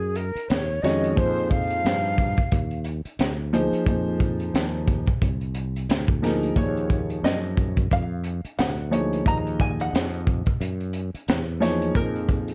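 A twangy, plunky open-back banjo carries the melody in this cool, mellow jazz-hop excerpt, entering at 6.6 seconds with a fingerpicked, percussive tone touched by slapback echo. Before it, a breathy silver concert flute opens the clip with a brief, hollow second line, close-miked, tongued and played with vibrato, also under slapback echo. Beneath them, a growly fretless electric bass sustains low notes with a direct, amped sound, while a boxy grand piano adds up-front accompaniment from 0.8 seconds. The crunchy breakbeat kit sits at the front at 89 BPM with a swung sixteenth-note feel: a high-tuned snare, punchy kick and hi-hat in a smooth small-room sound, its rolled-off top roughened by vintage 12-bit sampler grit. The harmony moves between Ebm9 and Fm7 in Eb dorian, and light reverb gives the dark production a soft sense of space.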